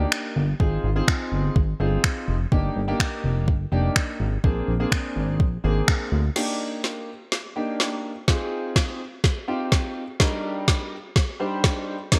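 Dance-pop with a euphoric, summery glow, cut from a longer piece, where a clear, intimate grand piano with audible action noise carries lush seventh and sixth chords through analog chorus and sidechain pumping, a glossy, retro chorused synth bass with a filter sweep drops out at 6.3 seconds, and an electronic R&B drum kit of soft kick, woody snare, metallic hats, finger snaps and crash, bathed in gated reverb, drives a build-up and drum fill from 6.4 seconds, all under light reverb and bright 1980s-style digital production.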